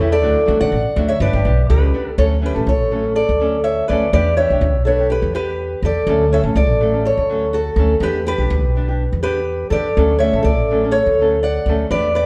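A band playing live together in one large studio, with a moderate reverb that lends the room a roomy glow, sets a sunny, joyful highlife mood in this short cut from a longer piece. Up front, an old ladder-braced acoustic guitar carries the fingerpicked melody with a dark, boxy tone from its aged strings. Beneath it, a small-sounding nylon-string guitar, its fresh strings also picked by finger, supplies a softer accompaniment. An upright bass sits forward in the mix, its pizzicato steel strings giving a thumpy, woody pulse. The harmony moves from D to G in a brief opening, and after about 2.2 seconds it settles into a gently swung sway between Dmaj7 and Em7 that carries the trio through to the end.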